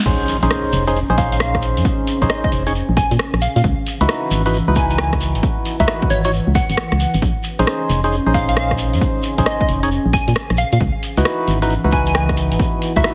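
A catchy, detuned square-wave lead opens this soulful, bouncy two-step garage excerpt at 0.0 s, its filter pluck and delay riding over hollow, nasal organ stabs roughened by 12-bit sampler grit and chorus. At 0.1 s the drop arrives with a very quiet electronic impact, a dark, up-front FM bass with tube saturation and sidechain pumping, and a punchy, tape-warm kick alongside a house kit of crash, rim clicks and warm hi-hats, swung on the sixteenths with a grainy shekere. A deep, moody sawtooth pad settles into the background from 0.3 s, and the whole track has a dry, heavily compressed radio sound.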